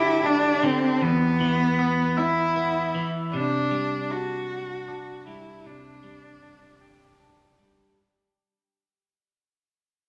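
A lush hall reverb with a 2.4-second tail surrounds this brooding, melancholic rock fragment, which fades out across its entire length. At a slow 52 BPM in 6/8, a clean, twangy electric guitar picks compressed arpeggios over Dsus4, E5 and Csus2, while a rich, focused solo cello bows the melody with vibrato until 7.2 seconds, both parts sitting up front and touched with analog delay. The tuning rests at A4 = 442 Hz.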